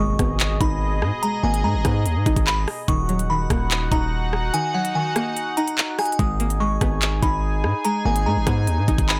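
Dark and ominous, this short cut of half-time drill unfolds over G#madd9 and D#m chords in a blown-out, overdriven digital ambience. A glassy, crystalline FM bell carries the melody high above a twangy, string-like resonator pluck with a sawtooth edge and moving notch, both coloured with chorus and low-pass filtering, the bell adding delay. Beneath them a detuned, evolving sawtooth pad holds sustained chords with a slow attack and long release, bright and coloured with chorus. A very quiet electronic impact opens the piece, and the drill kit arrives at 0.2 seconds with a knocking kick, crisp hi-hats, handclaps and rim clicks, the snare softly clipped. The punchy, heavy 808-style bass sits up front with the drums, its sine tone layered with noise, and the kick drops out between 4.5 and 6.2 seconds before returning.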